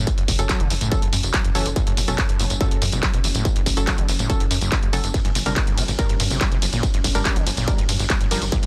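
Industrial and driving, this short cut from a longer piece of peak-time techno runs in a straight four with a distorted electronic kick at its core, sitting alongside an up-front drum kit of handclaps, warm hats, ride cymbal and tambourine, both re-recorded in a large room. Underneath, a tight, punchy sequencer bass built from sawtooth and square waves plucks through a moving notch filter, pumping against the kick from the background. An overdriven acid bass riff adds a squelchy, gritty, resonant edge, its distortion, subtle chorus and tape echo giving it a raw bite. From 0.4 seconds, muted, mellow dub chord stabs with short decay float in, coloured by chorus and tape echo, while a deep, moody pad of detuned unison saws and a sine sub octave drones darkly with a slow attack and long release. The harmony moves from F#m to Gm at 5.1 seconds, and the dense, heavily limited master keeps the mix dry and forceful.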